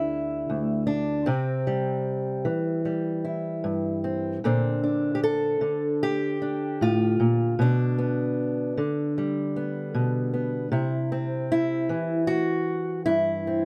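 A fingerpicked old ladder-braced acoustic guitar plays alone in this peaceful, hopeful folk fragment, cut from a longer piece and moving at 76 BPM in a straight 4/4. Its tone is dark, woody and boxy with the character of old strings, ranging from D2 to A4 over chords that pass from G5/D through C and Bbadd9 to G/B and back to C. Close, detailed microphones place the guitar up front in a dry sound with little reverb.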